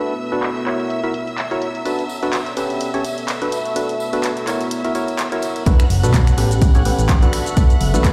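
A hollow, percussive organ stab carries the riff up front, with chorus and dub echo, in this bittersweet, soulful piano house cut at 126 BPM in B minor, swinging over Bm7, F#7 and A9 chords. A lush symphonic string section holds sustained chords above a deep, moody ambient pad, both pumping to the sidechain, while an analog drum machine's snaps, claps, hi-hat and shaker run through a filter sweep and a distant tambourine joins at 1.9 seconds. At the drop at 5.7 seconds, a fat, saturated sawtooth bass and a punchy electronic kick arrive up front, all in a large, reverberant hall.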